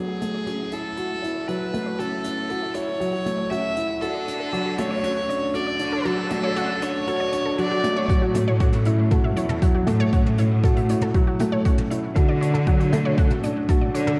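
A straight 4/4 pulse is set by a distant, roomy brush kit on hi-hat and toms, and at 8.1 seconds a deep, tape-colored electronic kick arrives up front for the drop. This tender, luminous piano-and-strings electronica piece, cut from a longer work, moves between A6 and Dmaj7 chords. A dark, mellow grand piano carries the riff with audible action noise and a subtle chorus, while a rich, bowed cello section with vibrato supplies the bass under sidechain pumping and a high-pass filter. A pure, floating solo violin with an airy bow sings the melody up front until 8.1 seconds. Behind it, a bright, detuned unison pluck spins arpeggios with a filter sweep across the build-up. Tape echo and shimmer reverb on the violin, pluck and piano feed a dreamy, lush hall sound.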